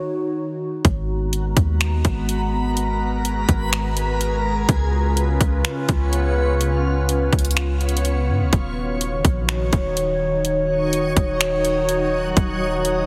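A warbly, detuned tape-like pad with chorus, ring modulation and sidechain pumping opens this hazy, melancholic half-time cloud-rap fragment alone before deep, boomy 808 bass and a trap kit with a hard-clipped kick, bright overdriven hats and finger snaps arrive at 0.8 seconds, and a dreamy, reversed granular texture joins at 1.4 seconds over Ebm7 to Abm9 to Db7 chords, all pressed into a heavily compressed, radio-like sound with light reverb.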